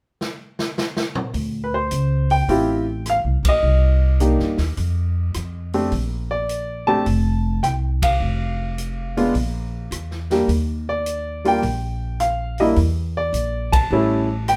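Swinging and smoky, this jazz piano trio excerpt in D minor moves at 105 BPM, opening with a drum fill on a big-band kit with a punchy kick and medium-tuned snare before a woody, growly pizzicato upright bass enters at 1.3 seconds and an intimate, up-front grand piano with audible action noise takes the melody at 1.6 seconds, the band hitting accents together at 3.4, 7.9 and 13.6 seconds over chords from D7sus4 through Bbmaj9 and Ebmaj7 to A7, all in light reverb.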